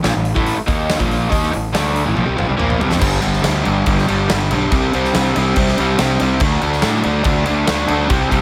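A double-tracked, overdriven semi-hollow guitar plays a heavy, driving hard rock riff up front, together with a growly fuzz bass played with the fingers and a punchy, big-room arena drum kit whose fill at 2.2 to 3.0 seconds gives way to a change from A minor to G5, C5 and D5 in this short cut from a longer piece.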